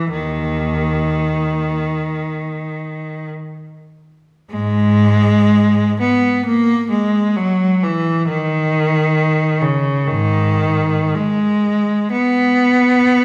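This classical piece for unaccompanied cello is lonely and yearning, moving freely in rubato at 44-68 BPM in G# minor and tuned to A4 = 442 Hz. A single bowed cello plays alone from 0.0 to 13.2 seconds, ranging from D#2 to B3 with a rich, intense tone, vibrato and a smooth top end, shifting into a new section at 4.5 seconds. The cello sits up front in a wet recital-hall reverb with a 1.5-second decay, and the passage is cut from a longer piece.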